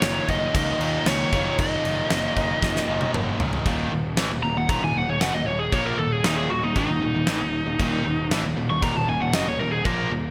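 Menacing and driving, this hard rock excerpt sets a biting, overdriven lead guitar up front over three picked rhythm guitars churning out a low riff (a cranked stack guitar with analog chorus, a double-tracked overdriven guitar and a very quiet, compressed distorted guitar), a fuzzy, punchy picked bass and a huge arena drum kit with a fat snare and punchy kick, whose fill from 2.6 to 3.7 seconds comes just before the lead guitar solo begins at 3.7 seconds, all set in a moderate plate reverb with bright 1980s-style digital production.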